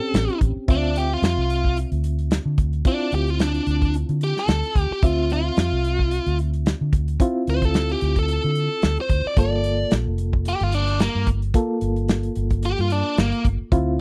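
A straight-eighth soul blues groove at 110 BPM in 4/4, with a light 16th-note swing, sets a mournful, soulful tone in D minor across this short cut from a longer piece. The soul drum kit sits up front with an acoustic, small-room character, a medium-tuned snare, a tight kick, hi-hat and a rolled-off top, while the vintage fingered electric bass, dark, foam-muted and round, anchors the low end from F1 to D3. A reed electric piano fills the accompaniment with a reedy, clean tone colored by fast tremolo through its built-in speakers. From 0.7 seconds the biting lead guitar takes a solo, bright and overdriven with a picked attack and slapback echo, ranging from Bb3 to D5. The harmony opens on A7#9, settles on Dm9, and moves to Gm9 at 9.4 seconds. The sound is dry and close, like a 1970s studio session with little reverb.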